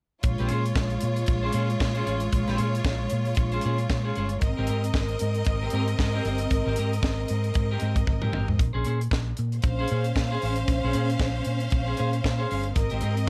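A small room gives this disco cut a tight, intimate sound, with the bowed strings, bass and drums all sitting up front. At 115 BPM in 4/4, with a light swing on the sixteenths, the groove feels celebratory and glamorous as it moves between Bbm9 and Abmaj9 chords. A punchy kick and a high-tuned snare drive the acoustic funk kit, with hi-hat and toms filling out the pattern and a short drum fill at 8.1 seconds. Underneath, a hollow-body, short-scale electric bass played with the fingers gives a dark, round, amped tone, while a clean, picked electric guitar adds accompaniment in the middle register. Alongside them, a symphonic string section plays a lush, focused second line with vibrato, carrying the glamour through this brief passage taken from a longer piece.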